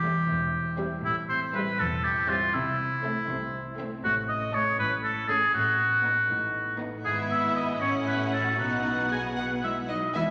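A straight 6/8 pulse at 80 BPM, counted in dotted quarters, carries this playful, whimsical film cue with a mischievous glint. The oboe sits up front with a roomy second line, while two violin sections stay distant in the background, one carrying the high melody and the other a lush, expressive counterline. Violas supply smooth, close accompaniment, a ringing concert harp spins thumb-plucked arpeggios, and bowed cellos and double basses anchor the bass with an even, rich foundation. The harmony drifts from C/E through Am7 and A to B7/A, E/G#, and a closing B. Near the end a woody, rustic marimba with soft mallets joins at 9.1 s, a very quiet mellow French horn section adds sustained chords at 10.1 s, and a hollow flute and a faint clarinet touch in at 10.2 s. A scoring-stage reverb bathes the ensemble in a spacious, cinematic glow in this short cut from a longer piece.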